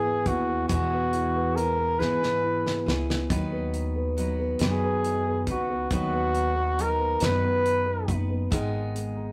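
A rough rehearsal-room recording with moderate studio reverb frames this tender, swaying pop ballad in six-eight, moving at 46 BPM in B major. Up front, a punchy flugelhorn with vibrato and scooped notes carries the melody until 8.2 seconds. Beneath it are a dark, mellow grand piano with audible action noise, a full-bodied picked steel-string guitar playing arpeggios with finger squeak, and a woody pizzicato upright bass. A dry, damped 70s drum kit with a fat snare and tight kick enters at 0.3 seconds and plays a fill from 2.0 to 3.3 seconds as the chords move from E to B, reaching G#m near the end of the excerpt.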